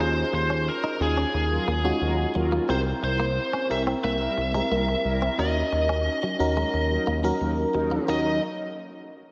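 A dreamy wash of lush hall reverb soaks this dramatic, urgent pop excerpt at 89 BPM in Eb dorian, where a biting, overdriven lead guitar carries the melody up front over glassy, bell-like FM electric piano, a twangy clean electric guitar riff in the background, a smooth synth bass, and dark, round synth brass stabs that enter at 1.5 seconds, all moving through Ebm9, C7 and Ebm7.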